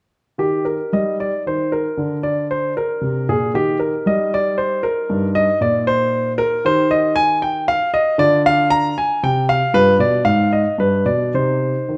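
Radiant and flowing, this brief baroque-style suite movement for solo grand piano moves in a rubato 3/4 at 116 BPM, its dark, mellow tone sitting up front through close, detailed microphones in a moderate recital-hall reverb as the harmony turns from Eb major to C minor at 6.6 s, passing through G7, a brief chordless pause and G before settling on C minor as the clip is cut from a longer piece.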